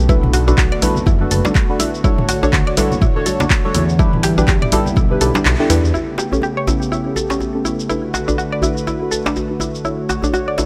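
Afro house at 123 BPM with a driving, warm mood, where a chorused analog pad, woody mallet-like plucks with analog delay, deep phaser-touched chord stabs and a tight, cracking djembe run throughout over a shuffled deep house kit of handclaps, hi-hat, shaker and toms, while a smooth tube-saturated synth bass, up-front electronic kick and bright background congas carry the first half, the kick dropping out at 5.5 seconds on a band accent before the harmony shifts to A9 at 5.9 seconds, all in a dry, gritty recording.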